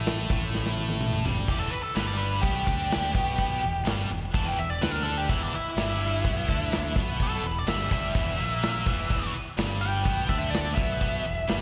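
Heard as a live gig through a venue PA with recital-hall reverb and small-room ambience, this heavy, gritty blues rock power-trio excerpt with a southern rock lean moves at 126 BPM in E minor, as a tight, double-tracked distorted guitar riff with slapback echo and a growling, overdriven fingered bass open together while a big acoustic rock kit with punchy kick and bright cymbals plays a fill from 0.5 to 1.5 seconds, when a nasal, parked-wah lead guitar with its own slapback echo takes a solo over an E minor chord.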